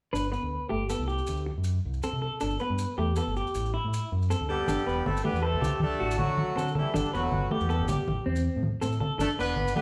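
Joyful and warm, this short highlife guitar band cut rolls along in a steady 12/8, with a bright, twangy clean electric guitar spinning harmonic-tremolo arpeggios over a slightly broken-up second guitar and a warm, up-front fingered bass that cycles through Gadd9, D and Am. Grainy maracas run from the start, and at 4.5 seconds a clear, punchy horn section enters with the melody in tight octave doubling, joined at 4.7 seconds by damped, thick-skinned congas played with soft hands. The band sounds as if playing live together in one large studio with a moderate reverb.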